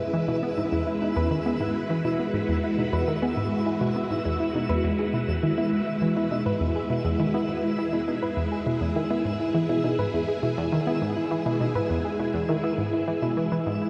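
A straight 4/4 pulse drives this expansive, luminous slice of sequencer-driven ambient space music, resting on a single Eadd9 chord. An up-front analog pluck, round and detuned, plays a low riff through chorus and delay, while a soft, gentle pluck traces arpeggios above it and a swirling, vintage string machine holds sustained chords through ensemble chorus and phaser. A faint, twinkling granular texture adds octave-up shimmer on top, and the whole mix sits in a huge, dark, long-tailed reverb.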